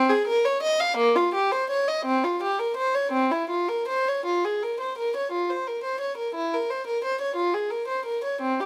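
A lone violin opens this short, grave passage from a baroque-style suite movement, flowing in 6/8 with free, rubato timing. Its gut-string tone is airy and slightly nasal with a reedy edge, played in period style and captured close and up front in a light reverb. The same opening phrase is stated twice across the 8.7 seconds, giving the fragment a sombre, circling character.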